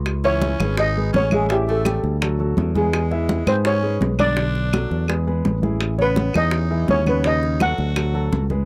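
A dry, close studio sound with a 1970s feel frames this short, driving and sultry Afro-Cuban jazz passage in a straight 4/4. A mellow steel pan carries the melody with a soft, shimmering metallic tone struck with rubber sticks, while a growling tenor saxophone adds a raspy, gritty second line full of vibrato and scooped notes. Underneath, a fingered electric bass sits up front with a bright, growly amped edge, and a concert grand piano fills in the accompaniment with deep bass, long sustain and audible action noise. The percussion blends tight, high-tuned bongos struck with hard hands, thick-skinned congas played softly in the background, and woody claves tucked behind them. The harmony moves from C#m9 through chords such as Dadd9, Bm7 and Amaj9 before landing on D at 8.0 seconds.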